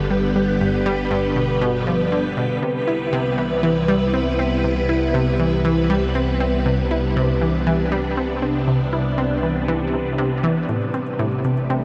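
A straight 4/4 pulse carries this short cut from a longer piece of ambient, sequencer-driven space music, expansive and luminous in mood. A bright, up-front analog pluck plays a round, detuned sawtooth riff with chorus and tape echo, while a swirling, vintage string machine holds sustained chords through ensemble chorus and phaser, and a fat, thick analog bass anchors the low end as the harmony moves from G to Cmaj7 and then to Am7. At 10.7 seconds a dry, metallic electronic hi-hat with overdrive enters in the background, and the whole mix sits in a huge ambient reverb with the warbling pitch drift of worn cassette tape.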